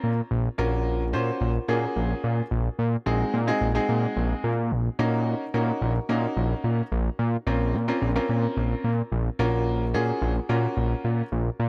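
Energetic yet bittersweet, this short dance-pop passage moves in a straight 4/4 groove and is cut from a longer piece. A clear, intimate baby grand piano carries the accompaniment from the start, its natural tone close and up front, with the sound of its action audible beneath the notes. Underneath, a fat analog bass built from detuned sawtooth tones gives a thick low end, shaped by a filter sweep and a fast attack that decays. The harmony rests on a Bb pedal, moving from Bbmadd9 through Gbmaj7/Bb, Ab7/Bb and Ebm7/Bb before circling back. The piano stops at 11.2 seconds while the bass continues to 11.7 seconds, and the whole mix is soaked in a moderate plate reverb that lends a dreamy haze.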